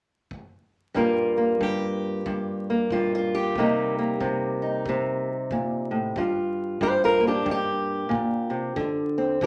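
A swung 4/4 pulse at 92 BPM carries this brief, brooding excerpt of acoustic country blues in G minor, with a distant, roomy kick drum thumping in the background from 0.3 seconds. An old ladder-braced acoustic guitar, fingerpicked and up front, enters at 0.9 seconds with a woody, boxy tone on old strings, playing the melody from G2 to C5 over Gm7, Cm7 and a closing D7(no3). The smoky feel is deepened by a moderate large studio reverb and a layer of vinyl crackle.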